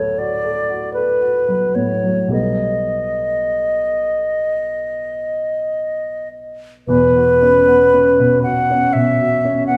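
A pure, straight-toned concert flute carries a pastoral, luminous melody between B4 and F#5 with crisp attack over a warm, natural baby grand piano reaching down to E1, in this slow, rubato impressionist excerpt around 51-61 BPM that drifts from Dadd9 through Baug7 to Esus2 at 6.9 seconds, both instruments up front within a resonant recital hall.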